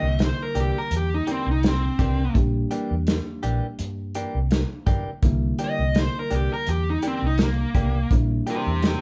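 Straight-eighth soul blues at 83 BPM in 4/4, this swaggering, soulful passage in C mixolydian sits on a single C9 chord and is cut from a longer piece. An overdriven lead guitar with a dark, smooth, picked tone takes a solo across the full 9.0 seconds, ranging from Bb3 to Eb5 and sitting up front. Beneath it, a reedy, clean electric piano plays accompaniment, while a compressed, direct-recorded clean electric guitar adds picked stabs until 8.7 s. A vintage fingered electric bass, foam-muted and round, anchors the low end from Bb1 to G2. The acoustic soul drum kit enters at 0.2 s with hi-hat, a punchy kick and a medium-tuned snare. The band plays live in one room, bathed in a moderate large studio reverb.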